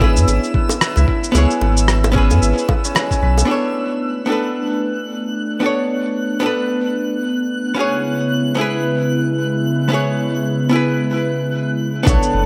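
An up-front archtop guitar, dark, clean and hollow-bodied with a digital delay, carries the accompaniment from start to finish in this smooth, warm sunset chillout excerpt with a gently swung sixteenth-note feel. Beneath it a round, deep sine sub bass sits prominently, while a bright, ringing concert harp plays delayed arpeggios. At the start they are joined by a thumpy, overdriven electronic kick, a gritty shaker and rim click, and tight, high-tuned bongos in the background. By 3.5 seconds the drums, bongos and bass have dropped out, and an airy, breathy pad with chorus takes over the sustained chords as a filter sweep moves across the synth pad; the harp stops at 6.0 seconds. High above, a twinkling granular texture shimmers in its own reverb, and the rhythm section, bass and harp return briefly at 12.1 seconds within a moderate concert hall ambience.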